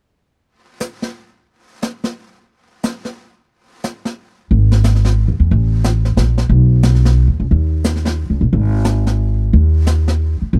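A dry, close studio sound with a 1970s feel frames this short cut from a longer small-group swing and bop jazz piece, playful and relaxed at 179 BPM in 3/4 with a lilting swing. Brushed drums on a medium-tuned snare and hi-hat open alone at 0.5 seconds, sitting back in the mix. At 4.5 seconds a woody, thumpy pizzicato upright bass on gut strings enters up front, dark and low, and carries the groove with the brushes through to 10.6 seconds.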